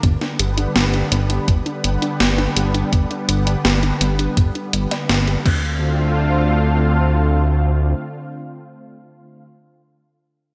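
A fat, thick analog bass with a sawtooth, detuned character sits up front under a filter sweep and sidechain pumping, anchoring this cinematic, nostalgic synthwave excerpt in D minor at 83 BPM, moving from G to Dm7 at 5.5 seconds. A silky, string-like pad with ensemble chorus and vibrato holds sustained chords, while a bright, wave-folded unison pluck plays delayed arpeggios in the background, also under a filter sweep. A thumpy electronic kick and an up-front gated 80s drum machine with crash, hi-hat and gated-reverb snare drive the groove until 5.6 seconds, all within a lush hall and a bright 1980s-style digital production.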